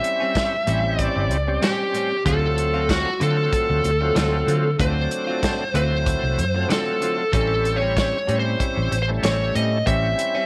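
This straight-eighth soul blues excerpt moves at 95 BPM in 4/4, rollicking and gritty, with a gentle sixteenth-note swing over A7#9 and D7#9 chords. A biting lead guitar sits up front with a picked, overdriven tone as it carries the melody. Beside it, a full, shouting tonewheel organ fills in the accompaniment with key click, chorus vibrato, mild overdrive and a slow rotary speaker. In the background, a direct-recorded clean electric guitar adds compressed, twangy stabs, while a distant, roomy drum kit of hi-hat, tight kick and medium-tuned snare keeps time with a rolled-off top. A dark, foam-muted fingered bass enters at 0.7 seconds, round, punchy and prominent, and light reverb with small room ambience surrounds the whole band.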